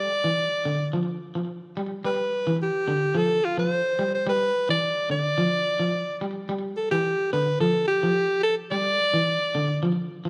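A moderate echo-chamber reverb gives this short afrobeat cut from a longer piece a roomy, hypnotic and driving character in a straight four. Up front, a bright alto saxophone carries the solo melody with light vibrato and a soft subtone in a pop style, while a twangy, slightly broken-up electric guitar picks arpeggios with a slapback echo over changes that move from Fsus2 through G, Fadd9 and Dm. The saxophone stops at 9.8 seconds, leaving the guitar to ring on alone until 10.3 seconds.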